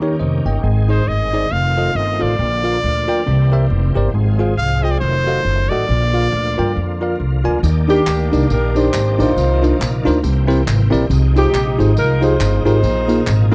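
A bell-like, clean electric piano, a shouting tonewheel organ with slow rotary speaker, light overdrive and chorus vibrato, and a woody, pizzicato upright bass open this uplifting, hopeful uptempo gospel excerpt with a swung feel. A brilliant, punchy trumpet carries the melody from 0.9 seconds with scooped notes and light vibrato, before tambourine and group handclaps arrive at 7.6 seconds and a mellow, tight saxophone section takes over the tune at 7.9 seconds. The sound is dry and close, in the manner of a 1970s studio, with the bass, trumpet and saxophones placed up front.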